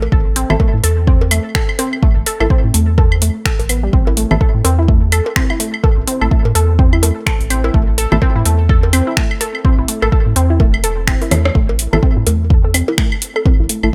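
Minimal techno at 126 BPM in A minor, quirky and cool, with a swung 16th-note feel, taken from a longer piece and set in a digital ambience. A deep, up-front electronic kick and a booming analog drum machine with overdriven finger snaps, metallic hats and rim clicks drive the groove alongside layered cowbell, congas and claves through digital delay, with a drum fill at 11.3 seconds. Underneath, a rubbery, nasal square bass pumps against the kick, while a squelchy resonant blip pluck with gritty 12-bit texture and tape echo and a muted, warbling dub chord stab with detuned chorus and delay carry the riff and harmony.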